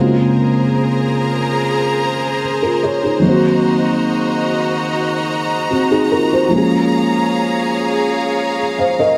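A felt-muted upright piano and a clear studio string section begin together, setting a longing, moody R&B mood at 73 BPM in Bb minor. The piano is soft, boxy and intimate with thick felt and audible action noise, sitting up front as accompaniment, while the focused bowed strings hold sustained chords with vibrato, moving from Bbm9 to Cm7b5 at 3.2 seconds and Db6 at 6.5 seconds. A lush hall reverb surrounds this short cut from a longer piece.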